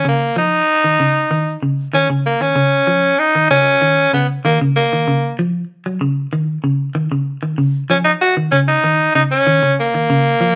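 Defiant and driving, this brief afrobeat passage, cut from a longer piece, moves in a straight 4/4 with the feel of a band playing live together in one room. A raspy tenor saxophone carries the solo melody up front from start to finish, its gritty, punchy tone delivered with forceful, pop-style phrasing and a light vibrato that gives it an edgy bite. Alongside it, a semi-hollow electric guitar plays clean, fingered arpeggios in a low register, its hollow-body resonance adding a warm glow beside the horn. The harmony rocks mostly between Ebsus2 and Dbsus2, with a rootless Badd9/C# colouring the change after the opening bars give way to a longer second passage at 1.9 seconds. A moderate studio reverb lends the room a natural sense of space while keeping both instruments close and present.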